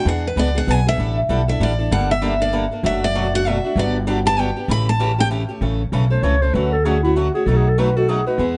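Acoustic string swing in the jazz manouche tradition, this brief, lively excerpt moves in a swinging 3/4 lilt. A picked steel-string acoustic guitar carries the melody up front with a bright, fresh-stringed concert tone, its solo dressed in plate reverb until it falls away at 5.3 seconds. Beneath it, a second picked steel-string guitar supplies accompaniment throughout, boxy and parlour-like, with audible finger squeak. An upright bass with gut strings sits prominently in the mix, plucked pizzicato with a woody, thumpy, dark sound. At 6.1 seconds a breathy clarinet enters close-miked and jazz-styled, taking the solo with vibrato over changes that move from A through Dmaj7 to B7. The whole is set in a light room reverb, with the top end softly rolled off.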